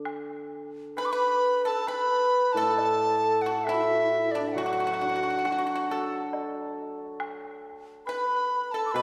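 Chinese traditional chamber music, festive and graceful, moves at a rubato 68 BPM in 4/4, opening with a shimmering, ringing hammered dulcimer accompaniment and a close, dry woodblock sounding in the background. At 1.0 s the large dizi enters up front with an airy, buzzing, reedy melody over a distant, end-blown xiao and a percussive, fingerpicked pipa sharing the second line. A generous hall reverb surrounds the ensemble in this short passage cut from a longer piece.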